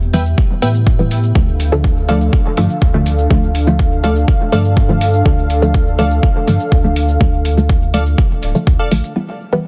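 Nocturnal and hazy, this dub techno excerpt moves in a straight 4/4 over an Em to Dm chord shift, anchored by an overdriven, up-front electronic kick drum and a round, soft sub bass, with overdriven metallic hi-hats and cabasa laid in studio ambience. A dark, detuned analog pad holds sustained chords with chorus and slow attack, while a muted, chorused chord stab with phaser and dub echo carries a filter sweep throughout, topped by a crisp, bright wavetable stab riff trailing its own dub echo. Sidechain pumping breathes through the pad, bass and both stabs in a dense, heavily limited modern master.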